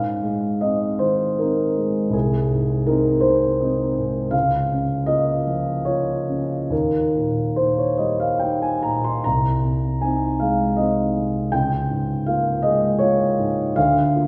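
A concert grand rings through a reverberant recital hall with a 1.7-second decay, heard from further back in the room, though the instrument's warm, open tone with deep bass and long sustain still sits up front. This romantic classical character piece for solo piano in Ab major moves in 3/4 at a flexible 67-85 BPM with a passionate, rubato feel, spanning C2 to C6. The harmony moves from Ab through Bbm/Db and Eb before reaching Bb/D at 13.8 seconds, where this passage taken from a longer work breaks off.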